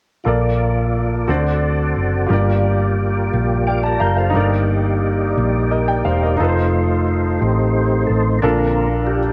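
A tonewheel organ with key click and a slow rotary speaker holds sustained chords over a clear, intimate baby grand piano, whose action noise is audible, and a round, punchy hollow-body electric bass in this reverent yet jubilant slow gospel excerpt in Bb major at 59 BPM in 6/8, moving from Bbmaj7 through D7, Gm7, Ebmaj7/G and F7 back to Bbmaj7, with moderate spring reverb, all recorded to cassette tape.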